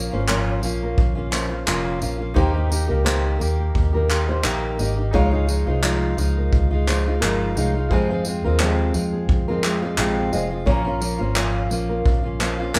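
Acoustic pop with a tender, reflective mood, moving at 87 BPM in 4/4 with a light swing on the sixteenths, heard in a 12.8-second excerpt cut from a longer piece. A fingerpicked steel-string acoustic guitar sits up front with an auditorium-sized body, joined by a round, foam-muted vintage electric bass that sounds dark and amped. A vintage brush drum kit enters at 0.3 seconds, its punchy kick, handclaps and tambourine carrying a natural small-room character with a rolled-off top. Further back, a thumb-plucked nylon-string guitar plays arpeggios from 0.1 seconds, and a brilliant concert grand piano adds polished, short-sustained accompaniment with deep bass. The harmony moves through Bbm, Eb, Dbadd9 and Fm before returning to Bbm, and the band sounds as if playing live together in one large studio with moderate reverb.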